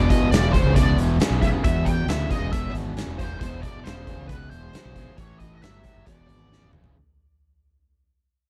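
A swaggering, gritty blues rock and southern rock excerpt at 136 BPM opens on a double-tracked, cranked stack guitar riff and a growly, fuzzed-out fingered bass, both up front, while a bluesy lead guitar plays a distorted, wah-inflected melody and a very quiet tonewheel organ holds full, lightly overdriven chords through a slow rotary speaker. An oversized, low-tuned drum kit joins at 0.1 seconds with a boomy kick, medium-tuned snare, hi-hat and toms, sounding saturated in a big, pumping room. The band rides an E7 to A7 and back to E7 change under a fade-out that runs the whole clip, closing on a drum fill from 6.5 seconds in an otherwise fairly dry mix.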